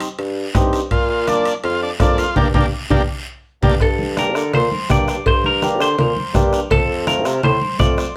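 Danceable and passionate, this cumbia at 166 BPM in G minor opens with reedy, dark accordion, raspy guiro, ringing timbales and cowbell, and congas struck with hard hands. A mellow bassoon carries the bass and a soft-beater bombo, close and dry, anchors the groove, while a buzzy, overdriven combo organ with heavy vibrato takes the up-front melody from 0.9 s until a band accent and drum fill close the first half. At 3.8 s a clean, hollow-body electric guitar with tape echo steps forward for a solo over the chords, all set back in a wet studio room.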